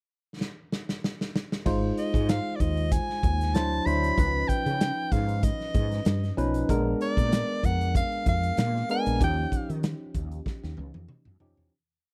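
Dry and glossy, this urban slice of polished 1980s jazz-funk pop opens with a drum fill on a punchy, up-front studio kit that settles into a crisp sixteenth-note groove with a light swing. At 1.7 seconds a woody, round fretless bass with ensemble chorus enters with an agile syncopated line and chromatic approach notes, while a barky, lightly overdriven tine electric piano with subtle chorus pushes drop2 chords with grace notes through extended harmonies like D9 and Bb7b9. A bright, close-miked soprano saxophone with soft attack and vibrato carries a motif-based jazz melody of call phrases from 2.0 seconds before the track fades out behind a closing drum fill.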